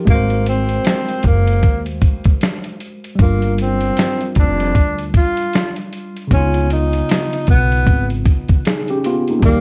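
A worn, slightly out-of-tune tine electric piano opens this mellow, cosy lo-fi hip hop fragment at 77 BPM, lightly overdriven and run through cassette tape and a low-pass filter, moving through Ab9, Gm7 and Db9 chords. From 0.1 seconds a breathy, distant tenor saxophone carries the melody with vibrato, subtone and scooped notes in an intimate, whispered jazz style, over woody pizzicato upright bass on gut strings. A compressed, sampler-style soul drum kit with a thumpy kick and medium-tuned snare sits up front in a swung 16th-note feel, all wrapped in light reverb and vinyl crackle.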